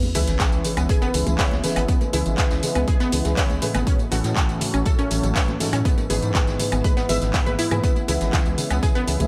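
Progressive house at 121 BPM in C# minor, dreamy and driving, cut from a longer piece: a punchy, up-front electronic kick anchors a pop kit of handclaps, metallic hi-hats, tambourine and woodblock, with very quiet brushed jazz snare and hi-hat, ringing congas and cowbell, and a faint electronic sub drop over the first 1.9 seconds, while a round analog bass, lush detuned unison pluck arpeggios with delay and thick-felt upright piano stabs with audible action noise play over a warbling wavetable pad with phaser in the background, the bass, pluck, piano and pad pumping to the sidechain through C#m7, A6 and E/G# in a small room ambience.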